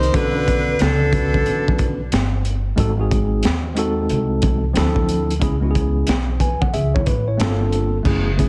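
Jazz-hop excerpt at 91 BPM with a swung 16th feel and a nocturnal, smoky mood, where a breathy alto saxophone with scooped, vibrato-laced notes and a close-miked tenor saxophone carrying slapback echo sound together only for the first 2.1 seconds, while a mellow tine electric piano plays chords from Bm7 through G#7b9 to Gm11, a woody pizzicato upright bass anchors the low end, and a crunchy, saturated breakbeat kit with a punchy kick, high-tuned snare and dark cymbals sits up front, all under light reverb and a heavily compressed radio sound.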